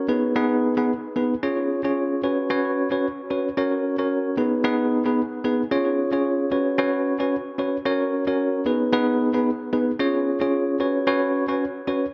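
A light reverb and an echo-heavy mix frame this breezy, romantic afrobeats fragment at 112 BPM in 4/4, with a 16th-note swing. A bell-like tine electric piano plays alone and up front throughout, bright and clean through built-in speakers, with tape echo trailing its notes. It cycles through G#m, C#, Bsus2 and F# before the cut from the longer piece at 12.0 seconds.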